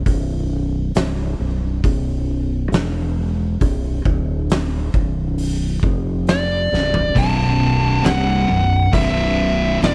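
Ominous and brooding, this stoner and doom metal excerpt crawls at 68 BPM in B phrygian, opening on a growling, overdriven fingered bass and an oversized, low-tuned drum kit with a fat snare and boomy kick in a bright stone room, before a dark fuzz lead guitar with slapback echo enters at 6.3 seconds, a drum fill begins as a B5 chord arrives at 6.7 seconds, and two thick, distorted fuzz guitars arrive at 7.1 and 7.2 seconds to fill in the background riff.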